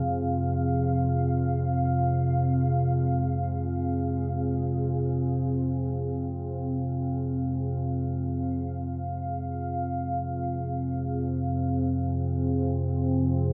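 Floating in free time, this desolate, ominous dark ambient drone holds a single chord for its 13.5 seconds, cut from a longer piece. A deep, rumbling drone of triangle and sawtooth tones sits low and up front with lush chorus, while a moody pad of detuned unison sawtooths, a sine sub octave and a moving notch sustains chords above it; both parts have slow attacks and long releases. The mix is soaked in a huge, wet reverb.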